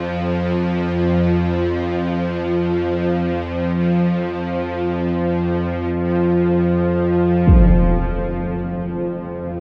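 Dark ambient drone, ominous and desolate, built on a tense, string-like bowed drone sitting up front from 0.0 to 9.6 s, its detuned sawtooth unison carrying a noise layer, slow attack, vibrato and long release within its own reverb. At 7.5 s a huge, bright impact, softened by a low-pass filter, marks the shift into the final stretch of this excerpt. A vast, wet reverb hangs over the scene, and worn cassette tape adds a warbling pitch drift.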